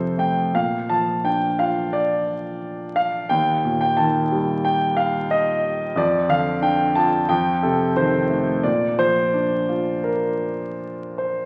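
Hopeful and sunny, this lyrical classical solo piano passage, cut from a longer piece, moves at about 89 BPM in 4/4 with uneven, rubato timing in Bb major. A single concert grand piano plays throughout the 11.5 seconds, spanning Eb2 to A5, with an intimate, up-front presence, smooth tone, deep bass and audible action noise that lend it a vintage character. The harmony settles on Bb, passes through Eb, then leans on F69 and F7 before coming home to Bb at 8.6 seconds. A wet scoring stage reverb with a 2.0-second tail surrounds the instrument, while the crackle of a very old 78 rpm record lies over the whole sound.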